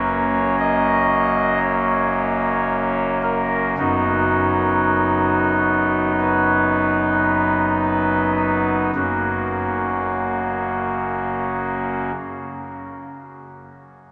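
This is a classical, chorale-style piece for pipe organ, majestic and serene in mood, taken from a longer work and moving at an unhurried pace in four. A single pipe organ plays alone, voiced on a soft reed oboe stop with a baroque character, and a gentle chiff at the start of each note. The organ sits up front and spans a broad range, from deep pedal tones to a clear upper line. The opening passage gradually slows, shifting its harmony at 3.8 s before settling back on the home chord as a new section begins at 9.0 s. The organ stops at 12.1 s, and the long, wet cathedral reverb carries its sound on through the final seconds.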